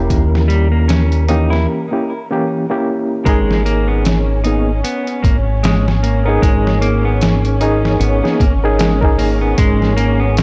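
Melancholic and brooding, this 76 BPM trip hop passage in G# harmonic minor, cut from a longer piece, sets a gritty, barky overdriven reed electric piano with tremolo and tape echo up front beside a round, deep dub fingered bass and a muffled, pitched-down sampler-style drum kit with a thumpy kick. A breathy, wind-like noise texture lingers in the background only until a break at 1.7 s, and a dark clean electric guitar plays arpeggios through tape echo under a filter sweep in the opening. Veiled, con sordino strings then bring lush sustained chords from 3.3 s as the harmony moves from D#7b9 to G#madd9, all set in light reverb and digital ambience.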